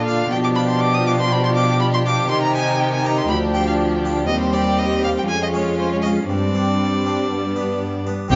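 Heard through a reverberant recital-hall acoustic with a softened, rounded top end, this short stretch cut from a longer baroque-style concerto movement feels dramatic and stormy, moving in a straight four-beat pulse. A single clear violin sits up front carrying the melody with smooth, even vibrato, climbing as high as Eb6, while a violin section also carries the melody from the background in an expressive, close-miked blend. A second violin section fills in an inner line with even, bowed tone, and a viola section adds focused accompaniment with a smooth top. Underneath, a rich cello section anchors the bass up front, and an airy, brilliant harpsichord with octave strings plucks its accompaniment from further back. The harmony darkens from G7/B through Cm and Db/F before settling on Gsus4 and G, and at 8.3 s a distant bowed double bass section briefly joins on a low C2 just as the passage is cut off.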